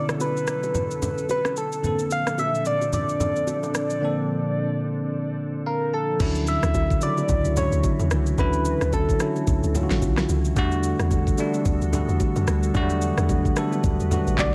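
A soft, round synth lead with chorus and delay carries the melody over a bright, bell-like tine electric piano and a glassy, ethereal FM pad with sidechain pumping, while a smooth R&B kit with a knocking kick and fat snare, plus very quiet bongos and congas, sets a soulful amapiano groove at 110 BPM in D major, with a deep, dark log drum bass arriving at 6.2 seconds as the chords move from Bm9 toward Dmaj9.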